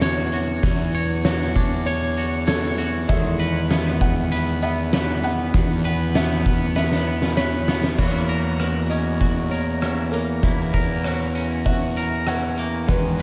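Post-rock with a euphoric, cinematic mood: a twangy, clean electric guitar picks arpeggios over a fuzz-laden, overdriven bass, while an oversized low-tuned drum kit sits up front with a fat snare, punchy kick, dark cymbals and gritty saturation. In the background, a felt-muted upright piano adds soft, intimate arpeggios with audible action noise and a diffuse ambient delay. A compressed pedal steel guitar played with fingerpicks holds sustained chords with slide, volume swells and lush chorus, and a drum fill from 6.8 to 8.0 seconds leads into a new section of this dreamy, reverb-soaked mix.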